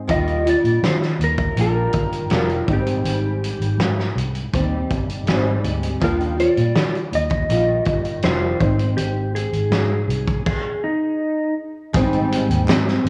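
Hazy and laid-back, this short indie bedroom-pop clip at 81 BPM drifts over Ebmaj9 and Abmaj7 chords, with a fingerpicked nylon-string guitar warbling through ensemble chorus, a dark, compressed slide lap steel carrying the melody with subtle chorus and analog delay, a round, foam-muted electric bass, and a loose drum kit with a fat snare and dark cymbals, all of it wrapped in worn cassette-tape wobble and small-room reverb, before the band stops at 10.5 seconds, returns at 11.9 seconds, and a crisp group handclap sounds faintly in the background at 12.7 seconds.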